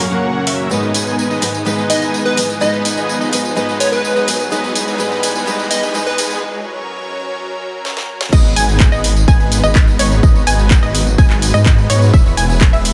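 A straight 4/4 pulse at 126 BPM drives this euphoric, anthemic festival progressive house passage in G# minor, cut from a longer piece. It opens with a bright fingerpicked steel-string acoustic guitar, a lush chorused pad in the background and a huge, thick supersaw riff under a filter sweep, all three pumping against the sidechain while a very quiet riser climbs beneath them. A house kit with a cracking, tape-warm snare, handclaps, tambourine and hi-hat joins at 0.5 seconds. From 1.9 seconds a catchy, evolving plucky lead sits in the background with digital delay, fading out just before the guitar and riser drop out for a short break at 6.4 seconds. A drum fill leads into the drop at 8.3 seconds, where a punchy, up-front kick arrives with a menacing, beating detuned saw bass and a lush unison pluck playing arpeggios over G#m and E chords. The mix carries light reverb, with the drums sounding re-recorded in a small room.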